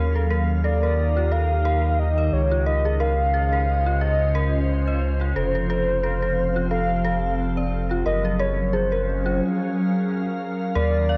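A warbling, nostalgic synth lead carries the melody from 0.6 seconds, its detuned tone softened by chorus, cassette tape coloring and delay, with a mellow vibrato. This short IDM excerpt moves at 89 BPM in 4/4 with a light 16th-note swing, and its mood is wistful yet playful. Beneath it, a glassy FM pad holds sustained chords with a slow, ethereal bloom, thickened by ensemble chorus and its own reverb, drifting through Ebmaj9, Dbmaj9, Fadd9 and Gbmaj9. An eerie, inharmonic synth bell traces decaying arpeggios, treated with chorus, phaser, delay and a gritty 12-bit sampler texture. Anchoring the low end, a round analog bass with a deep, nasal filter pluck and tube saturation sits up front, all within a light room reverb.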